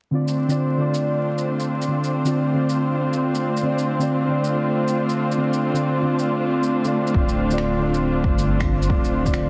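Future garage with a rainy, ghostly mood, in which muted felt-like synth keys carrying chorus, 12-bit sampler grit, analog delay and a filter sweep rest over veiled, con sordino strings sustaining a Dm7 chord, both pumping against the sidechain, while overdriven shaker and finger snaps add a small-room sheen and are joined at 7.1 seconds by a punchy kick and round sine sub bass, also pumping, the mix squeezed into a heavily compressed, radio-like sound laced with vinyl crackle.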